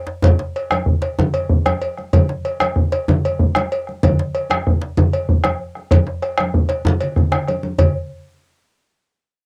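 A short cassette home recording in a small, wet booth, this cut from a longer West African traditional piece has the worn, narrow character of an old tape. A West African drum ensemble drives it in a festive 12/8 at 127 BPM, counted in dotted quarters with a straight feel. The bombo sits up front with a round, vintage tone. The djembe enters at 0.1 seconds, deep and close in a dry pocket, while the bombo, congas with bright, thin skins and hard hands, and a metallic cowbell join at 0.2 seconds. Drum fills mark the opening and the stretch from 7.0 to 7.8 seconds, pushing into a brief new section before the ensemble stops at 7.9 seconds.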